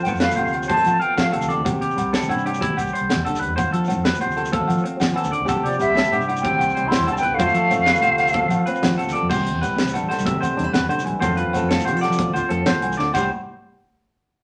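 An airy, vibrato-laden concert flute sings up front over twangy, picked clean electric guitar arpeggios, a fingerpicked nylon-string guitar, a round, dark fingered electric bass and a tight funk kit with a punchy kick and high-tuned snare, opening this danceable, carefree highlife groove at 125 BPM in a straight 12/8 in C major, where a breathy, subtoned alto saxophone shadows the flute's two phrases in the background, ringing agogo bells, a grainy shekere and very quiet, bright congas keep up the percussion, and a drum fill at 1.2 seconds and a wet studio reverb frame a loop of F and C chords.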